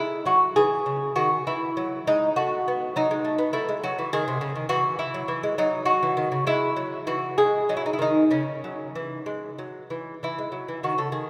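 A solo lute with gut and double strings, some doubled at the octave, is fingerpicked up front in a delicate, flowing baroque-style dance in a rubato 6/8, its radiant chords ringing through a cavernous church reverb as it reaches C# minor at 8.3 seconds before moving to E in this short excerpt from a longer piece.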